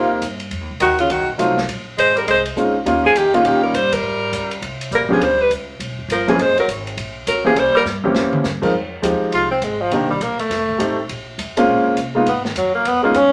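Small-group swing and bop jazz in F minor at a brisk 204 BPM, cool and swinging, with a warm, vibrato-rich alto saxophone carrying the melody up front until 7.8 seconds while a clear, soft-attacked tenor saxophone plays a second line beneath it. A woody upright piano comps close at hand, and a dark, thumpy pizzicato upright bass sits low in the mix. The band hits an accent at 3.9 seconds, and an airy, polished drum kit with a punchy kick plays a fill around 7.9 seconds. At 8.7 seconds the tenor takes over with a solo over chords such as Fm9 and Bbm9. Everything is set in a wet club reverb, in an excerpt cut from a longer piece.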